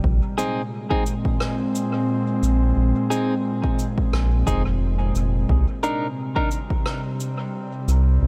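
Light reverb and a small room's ambience frame this deep, meditative ambient dub excerpt at 88 BPM in 4/4, with a gentle swing on the sixteenths and a shift from Bb7sus4 to Cm9 at 5.5 seconds. An airy, breathy pad with chorus sustains detuned chords over a round, up-front analog bass that blends sawtooth and sine tones with ring modulation, while a punchy, layered electronic kick plays until 6.8 seconds. Clean, picked electric guitar stabs carry dub echo from 0.4 seconds, alongside distant, roomy cabasa and rim click that also trail dub echo.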